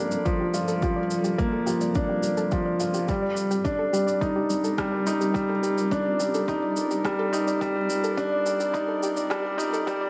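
A felt-muted upright piano opens this hypnotic, moving piano and strings electronica excerpt, playing a mellow, intimate riff up front with audible action noise and a touch of delay. Beneath it from the start, a cloudy, evolving granular pad holds sustained chords with a slow attack and its own built-in reverb, while a soft, round pluck with chorus and delay traces dark arpeggios; both sit in the background and pump against the sidechain. An electronic shaker and rim click with a tape-warm character come in at 0.1 s, and a deep, overdriven, layered electronic kick drum joins at 0.3 s, setting a straight 4/4 pulse at 106 BPM. The harmony moves from Gm7 to Cmadd9/G at 3.1 s as the passage builds, with a filter sweep running across the pad throughout. A moderate echo chamber reverb of 2.6 s gives the whole mix a spacious, hazy sheen.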